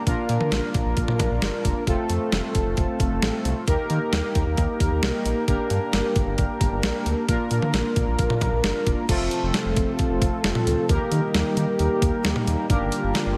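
A light reverb frames this melancholic, nocturnal synth-pop excerpt, moving at 133 BPM in a straight 4/4 over a Bb, F, Eb, Gm progression. Up front, a bold, fat analog synth brass with chorus and vibrato carries the accompaniment over a round, deep analog bass. A clean 12-bit digital drum machine, tape-warm and re-recorded in a large room, drives it with a thumpy kick, medium-tuned snare, hi-hat, toms and crash cymbal, and at 9.1 seconds a smooth, dark analog pad with chorus enters in the background with slow-attack sustained chords, arriving on F.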